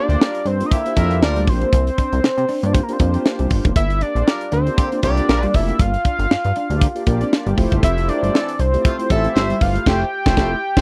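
From the first moment of this excerpt of early-eighties boogie funk at 118 BPM, a fat analog lead carries the melody with sawtooth and square-wave bite, a sub octave, vibrato and a filter sweep, while a distant, roomy horn section with light vibrato plays a second line and mellow, brassy synth brass fills in dark, detuned chords through chorus and ring modulation. A chorused synth bass, glossy and retro with a pulse-width-modulated plucky tone, sits up front beside a tight funk drum kit with a high-tuned snare, snug kick, hi-hat and crash. Deep in the mix, a very quiet, slightly broken-up electric guitar picks a compressed riff until 9.8 seconds. The 16ths swing gently in 4/4 and the harmony in G dorian rests on C9sus4 before moving to Fmaj9 at 7.6 seconds. The band closes on an accent from 9.9 seconds, in a dry, close small-room sound that gives the funky, late-night mood an intimate, 1970s-style feel.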